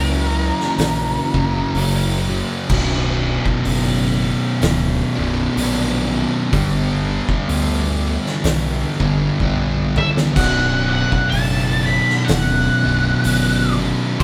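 Brooding and sludgy, this stoner and doom metal excerpt crawls along in a swung 4/4 as three fuzz guitars grind out the riff in the background, one of them double-tracked and compressed, over a growling picked bass with a round, overdriven tone, moving from F# through Bm and G back to Bm. An oversized low-tuned drum kit with a boomy kick, fat snare and dark cymbals enters at 0.6 seconds, sounding saturated and gritty in a bright stone room, and plays a fill at 9.4 seconds. A dark octave-fuzz lead guitar with wah sings a high melody at the start and returns at 10.0 seconds, all captured as a band playing live in one room.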